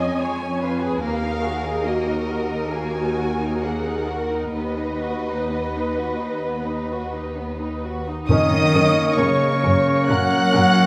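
Muted, veiled string sections open this uplifting, moving cinematic film score in F# major, with violins carrying the melody over a second violin line, lush violas and an up-front cello bass at a rubato 61-74 BPM; at 8.3 s the music resolves to F# as an airy flute section, a warm oboe, a mellow distant clarinet, mellow French horn chords, double basses and close, dry timpani join, all set in a moderate scoring-stage reverb in this brief excerpt cut from a longer piece.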